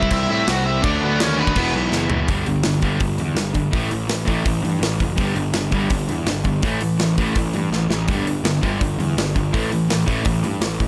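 A growly, fuzz-soaked picked bass sits up front in this upbeat, energetic punk rock clip, pushed along by a punchy acoustic drum kit with bright cymbals and a fill at 1.9 seconds. A compressed, overdriven lead guitar with delay carries the melody only until 1.7 seconds, while a bright distorted guitar and a hollow-toned overdriven semi-hollow guitar play riffs in the background. From 2.3 seconds the harmony moves between G5 and A5 in a dry, close-sounding room.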